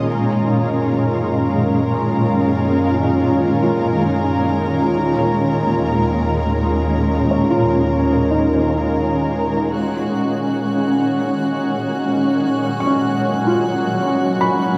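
Unfolding in free time, this spacious, reflective ambient passage is cut from a longer piece and tuned slightly below standard pitch. A shimmering, ethereal pad sits up front, holding sustained chords with a slow attack, long release and an octave-up granular sheen, thickened by chorus and its own built-in reverb. Behind it, a soft, felt-muted upright piano traces mellow, intimate arpeggios that drift through a diffuse ambient delay. A lush, bowed double bass section fades in beneath the texture with focused vibrato and stops at 9.7 seconds. A chamber violin section adds a biting, earthy edge with light vibrato throughout. The harmony moves from F#6 to D#5 and then to G#7(no3), all of it bathed in a huge, wet reverb with a 7.6-second decay.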